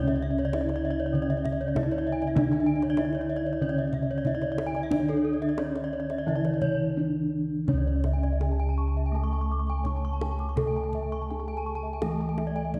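Up-front bossed gongs struck with padded beaters carry the bass of this hypnotic, brilliant Balinese gamelan passage in C# pelog, their round, beating bronze tone anchoring a straight 4/4 pulse that moves between 83 and 98 BPM. Above them, a mellow, airy metallophone played with padded disc mallets carries the melody over a dark, smooth horn-mallet accompaniment, while two wooden-mallet metallophones spin out arpeggios, each of these keyed instruments tuned in pairs for shimmering beats. A tight, close kendang plays a fill from 7.1 to 7.7 seconds leading into a new section, and the ensemble sits in a reverberant scoring-stage space heard from further back, cut from a longer piece.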